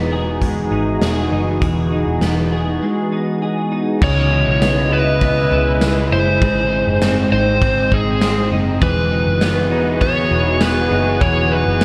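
A warbly, detuned tape-like pad, bright twangy arpeggios on clean electric guitar with chorus and delay, and a round, foam-muted electric bass open this hazy, ethereal dream pop excerpt over Emaj7, joined at 0.4 s by a gritty, saturated garage drum kit with tambourine and cymbals. At 4.0 s an overdriven slide guitar played with fingerpicks takes the melody up front, its delayed lines sitting above a C#m7, G# and Emaj7 progression. A lush hall reverb and a small room give the whole a nostalgic, lo-fi glow.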